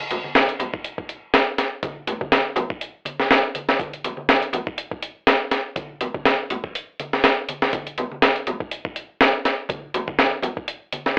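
A swung sixteenth-note groove in 4/4 drives this short, funky and energetic breakbeat cut from a longer piece. A sampler-style drum kit sits up front, its compressed, gritty sound built from a thumpy kick, a high-tuned snare and hi-hat, with a small room ambience around it. Congas enter at 0.1 seconds and play beneath the kit at a lower level, their bright, thin-skinned tone low-tuned, compressed and saturated. The whole recording carries a telephone-like coloring inside a moderate studio ambience, giving the beat a narrow, lo-fi character. It runs as a single section for 11.2 seconds.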